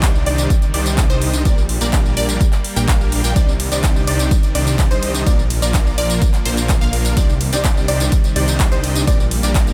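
A punchy, up-front electronic kick drives this emotional, anthemic festival progressive house excerpt from the very first beat at 126 BPM in C minor, joined at once by metallic hats, handclaps, ride and tambourine from a big-room dance kit, and a thick, menacing, saturated detuned saw bass. Above them, a huge, dense compressed supersaw riff with vibrato and delay carries the hook, while a bright unison pluck with a moving notch and filter sweep spins delayed arpeggios and a lush supersaw pad holds slow-attack chords in the background. Every part except the drums pumps with sidechain as the harmony cycles between Cmadd9, Gm/Bb and Bb in a dry, close mix, the kick dropping out at 9.6 seconds just before the cut.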